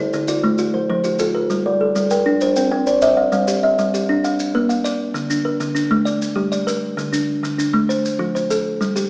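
A straight 12/8 pulse at 132 BPM in dotted quarters drives this hypnotic southern African traditional piece, a cut from a longer work built as an mbira-style interlocking cycle in G equiheptatonic. Two kalimbas play arpeggios from D3 to G5: the louder one has a woody, hollow-box tone with short thumbnail plucks sitting up front, while the softer, solid-board kalimba rings mellow under fingertip plucks before dropping out at 3.6 s. Grainy, acoustic maracas sit low in the mix throughout, and the whole is bathed in a reverberant recital-hall space heard through a small-speaker sound as the chords move from Dm, F, Gm and C toward Bb and Gm.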